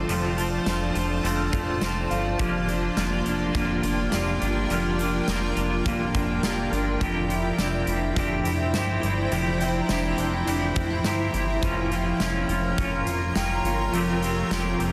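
A straight, steady 4/4 pulse comes from a huge arena drum kit that enters at 0.1 s, its punchy kick, medium-tuned snare, hi-hat and tambourine ringing in a pumping hall sound. This short dream pop passage, cut from a longer piece, feels floating and dreamy. A granular cloud pad holds sustained chords in a blurred, evolving haze with its own reverb, while a chorused synth bass sits low with a glossy, nasal, retro pulse. Two electric guitars weave through the harmony: a clean, twangy one adds accompaniment through tremolo and lush chorus, and a slightly broken-up, compressed one picks arpeggios through analog chorus and delay. A delicate, bell-like celesta with delay sits in the background until 14.5 s. With F as the bass note of every chord, the harmony moves from F6 through Gm7/F, Cadd9/F and Bbm/F before settling on Fadd9, all framed by small-room ambience and a dense, heavily limited modern master.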